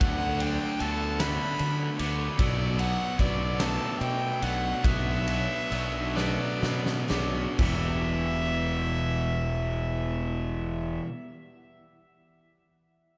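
A brooding, melancholic post-rock passage in 6/8, set in a lush hall reverb, opens at once with a growly fuzz bass up front, a pure sul tasto violin melody floating on slapback and tape echo, and a huge arena drum kit with a fat snare and punchy kick in the background. These are layered over two bright overdriven guitar riffs, a twangy twelve-string electric guitar and a soft, bell-like glockenspiel (also echoed) playing arpeggios, and a faint, airy pad of sustained chords. The music slows from 2.4 s, a drum fill from 6.2 s leads to the drums dropping out at 7.8 s, and the glockenspiel stops at 8.1 s as the remaining parts settle on an Emadd9 chord.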